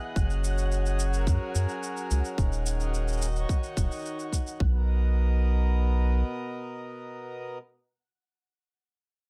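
A tight, up-front electronic kick and a soft shaker set a straight 4/4 pulse at 108 BPM in this pastoral folktronica excerpt in B major, both dropping out at about 4.7 seconds. A reedy, breathing pedal harmonium holds sustained chords moving from F#add9 through D#m7 to Bmaj7. Beneath it sits a deep, round analog bass carrying a filter sweep through the opening 4.6 seconds, while a grainy, flickering granular texture drifts in the background with its own reverb.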